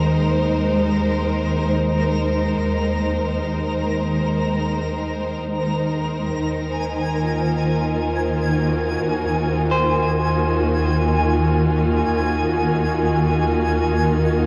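A lush bowed string section opens the recording with sustained chords, up front and smooth, over a dark, close double bass section that holds a low Eb with soft attack, vibrato and expressive portamento. Behind them sits a calm, organ-like drone, detuned and ring-modulated with ensemble chorus, while a twinkling granular texture adds a sparkling, octave-up shimmer high above. This ambient passage in Eb dorian floats in free time with a melancholic yet serene mood, and the harmony moves from Abadd9 over Eb to Eb minor at 6.3 seconds. At 9.7 seconds a slightly broken-up electric guitar enters with picked, scooped arpeggios around C5, trailed by tape echo. The whole piece is bathed in a huge, wet ambient reverb and the worn, warbly pitch drift of old cassette tape, and it is cut from a longer work.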